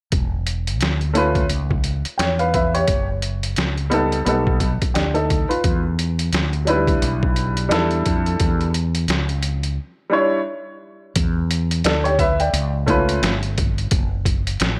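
Opening at 0.1 s with a round, punchy fretless bass and a gritty, pitched-down sampler-style drum kit with a thumpy kick and tape-warm compression, this cool, smoky jazz-hop cut in E dorian swings at 87 BPM as a clear, woody, slightly detuned upright piano enters at 1.1 s with jazzy chords like C#m7b5 and B7alt, pausing for a break at 9.8 s before a closing passage from 11.2 s, all set in a light reverb.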